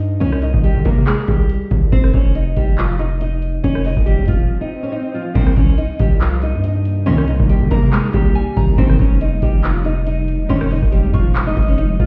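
A booming analog drum machine with a deep kick and metallic hats drives this hard-hitting, melancholic half-time trap cut from a longer piece, joined by a saturated, aggressive 808-style bass up front and a bright, fingerpicked nylon-string guitar melody through low-pass filtering and tape echo, while a brief electronic swell leads into a break before lush bowed strings enter with stabs at 5.4 seconds, a blurred granular cloud pad settles in at 6.6 seconds, and a gentle, warbling FM synth bell adds a faint second line at 7.1 seconds, all heard muffled as if through a wall in a stone room.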